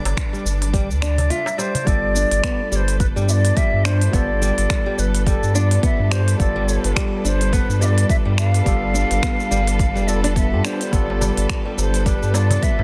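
A swung sixteenth-note groove from a deep, layered electronic kick and a crisp, tape-warm kit of cabasa, finger snaps and hi-hat drives this earthy organic downtempo excerpt, where a round sine sub bass and lush bowed strings pump under sidechain, fingerpicked nylon-string guitar arpeggios and a bell-like tine electric piano entering at 1.8 seconds ring through digital delay, a breathy end-blown ney carries the melody from 1.0 seconds, a high, dry metal-shell darbuka sits in the background near the start and close, and a glassy, chorused harmonics texture drifts through only the opening 1.9 seconds, set in a small room with a dense, heavily limited master.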